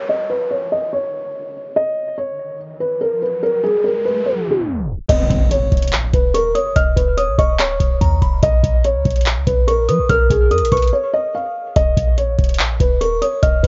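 A half-time trap groove at 144 BPM kicks in at 5.1 s: a booming analog drum machine with a deep kick, metallic hi-hats, handclaps and crash cymbal sits up front, while a clean, boomy sine 808 bass stays darker in the background. Before that, this melancholic, menacing hip hop excerpt opens on a soft, boxy felt-muted upright piano melody with audible action noise and tape echo, filter-swept as electronic downlifter and riser effects and a tape stop lead into the beat, which lands with an electronic impact. From 6.3 s a delicate, tinkling FM tine bell with chorus, phaser and tape echo adds a second line, the whole mix coloured by worn, warbling cassette tape with little reverb and a dulled top end, and a brief break arrives at 10.9 s.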